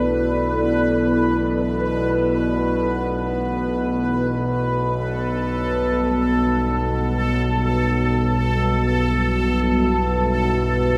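Cavernous and desolate, this dark ambient drone drifts in free time, a brief fragment cut from a longer piece that sits in a huge, wet reverb with a 7.5-second decay. Up front, the analog drone holds the low register from B1 to B2, its vintage sawtooth and pulse-wave tone warbling and evolving under pulse-width modulation and chorus, with a slow attack and long release. Above it, the dark analog pad sustains moody chords between G3 and E5, a deep blend of sawtooth, triangle and sub octave colored by chorus, phaser and shimmer reverb. Also up front, a bright, bubbling stepped-filter texture hovers between A4 and B4, its resonant sawtooth jumping through random filter steps and washed in chorus, built-in reverb and shimmer. All three parts sound together for the full 11 seconds as the harmony shifts from Bm to Gadd9 at 5.0 seconds.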